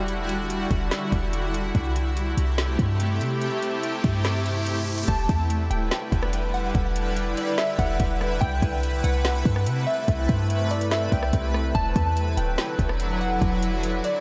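Atmospheric cloud-rap in a half-time hip hop feel, this melancholic, spacious cut opens on a shimmering, ethereal pad holding Em9 and C6 chords with chorus, tremolo and sidechain pumping, over a deep, boomy 808-style bass and a soft, overdriven R&B kit with a woody snare, metallic hats and 12-bit sampler grit. A background riser sounds from 3.7 seconds, and at 5.1 seconds a glassy, crystalline wavetable pluck enters with the melody, its detuned tone colored by chorus and delay. The whole dreamy mix is soaked in a huge ambient reverb.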